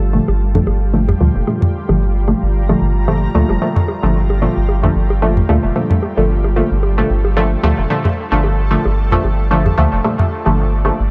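Set in a light digital ambience, this hazy, nocturnal dub techno excerpt from a longer piece swings gently as a round, soft sub bass sits up front beneath muted, detuned sawtooth chord stabs carrying chorus, phaser, vintage 12-bit sampler grit, dub echo and a filter sweep, while a cloudy granular pad blurs through its own reverb and dry, tape-warm electronic bongos and toms with dub echo enter at 0.3 seconds.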